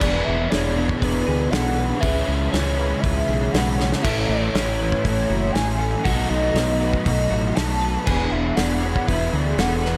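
A hazy, melancholic stretch of shoegaze and dream pop rock opens with the full band together: a growling, overdriven fingered bass sits up front under a raw garage guitar riff thickened by chorus, while a second overdriven guitar also plays a riff further back, trailed by reverse reverb. A soft, round sine lead carries the melody with vibrato, chorus, phaser and analog delay, and a bright, twangy twelve-string electric guitar picks compressed arpeggios in the background through its own chorus and delay. A loose indie kit with dark cymbals and a tight kick plays a fill at 3.8 seconds over a cycle of E7, C#m7, Amaj7 and B7 that returns to E7, all set in a small, lightly reverberant room.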